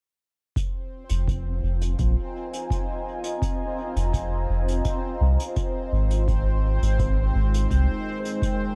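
A straight 4/4 pulse at 84 BPM carries this deep, hazy stretch of ambient dub in F minor, cut from a longer piece, with a tape-warm analog kick and a brushed hi-hat with a rolled-off top entering at 0.6 seconds. A round, soft sub bass with a tube-saturated edge sits up front, while a moody, detuned sawtooth pad with chorus and its own reverb holds sustained chords moving from Fm11 to Abmaj9 at 6.3 seconds. Alongside them a bright, resonant sawtooth texture bubbles through random filter steps, and the overall production is dark and dry.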